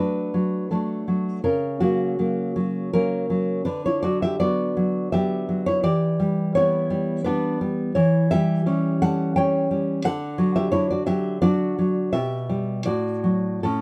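A lilting three-beat sway that stretches and yields with rubato carries this nostalgic, romantic passage for solo nylon-string guitar, cut from a longer piece. The guitar sits up front with a full-bodied, deep classical tone, a thumb-plucked attack and audible finger squeak as it moves through its chord changes before settling home. A moderate studio ambience gives the warm sound a touch of air.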